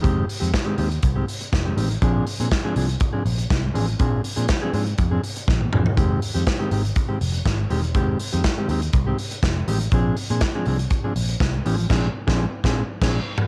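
Sultry and danceable, this short disco passage moves at 121 BPM in a straight 4/4, taken from a longer piece. A modern studio drum kit sits up front with a punchy kick, a medium-tuned snare, hi-hat, toms and crash cymbal, its pumping room sound carrying a cassette tape coloring. Alongside it, a vintage muted picked electric bass lays down a dark, round, foam-muted line with an amped character. A mellow, clean electric guitar, fingered and tinted by cassette tape, plays accompaniment over a harmony that alternates between Fm9 and Bb9. Drum fills arrive around 5.5 seconds and again at 11.9 seconds, where the whole band hits an accent through to the close at 13.5 seconds. The home cassette recording is dry, with little reverb.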